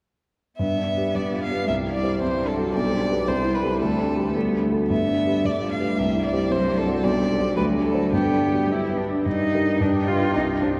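Bathed in a wet cathedral reverb within a dark, warm production, this spirited, cheerful snippet of a quick classical-period piano trio movement in a flexible 2/4 sets a rich, smoothly bowed violin melody with vibrato above a more distant, equally even cello second line. An intimate, up-front grand piano with audible action noise carries the accompaniment throughout, and the harmony turns briefly to G minor at 9.3 seconds.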